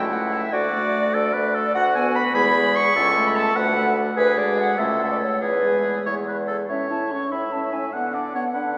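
Set in 6/8 with a straight feel, this brisk classical-period movement for wind quintet sounds cheerful and graceful, and it is cut from a longer piece. The concert flute carries the melody with a hollow, pure tone, tongued and touched with vibrato, yet it sits in the background, while the oboe's punchy, smooth-topped second line with vibrato stands up front. The clarinet joins at 0.1 s with a mellow accompaniment in the same high register as the flute. It is placed distant alongside the roomy French horn, which fills in the middle. Beneath them the bassoon holds the bass with a warm, vintage tone and light vibrato. The harmony moves through gentle tonic, subdominant and dominant colours before a fresh phrase begins at 6.7 s, and the whole quintet is bathed in a wet church reverb that gives the ensemble a resonant, spacious glow.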